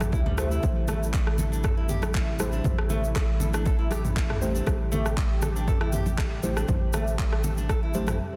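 An earthy, hypnotic afro house groove opens with a smooth, detuned analog pad, soft, nasal chord stabs carrying tape echo and a round, dark analog bass, each pumping with sidechain, while an overdriven deep house kit of handclaps, rim click and toms, close, hard-handed congas and a grainy tube shaker fill out the rhythm; at 0.1 s a punchy, layered electronic kick and bright, fingerpicked nylon-string guitar arpeggios join in, and the dense, heavily limited mix cuts off at 8.2 s.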